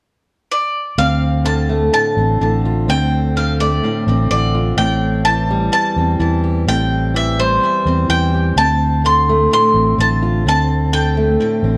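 Worn, warbling cassette tape with a drifting pitch and a touch of studio reverb colors this stirring, yearning indie folk excerpt from a longer piece. A bright, double-strung bowl-back mandolin carries the melody from 0.5 s, its picked notes trailed by digital delay. At 1.0 s a fingerpicked steel-string acoustic guitar with fresh-sounding strings and a round, dark, amped electric bass join up front, shifting through an Am7 and back as the arrangement builds.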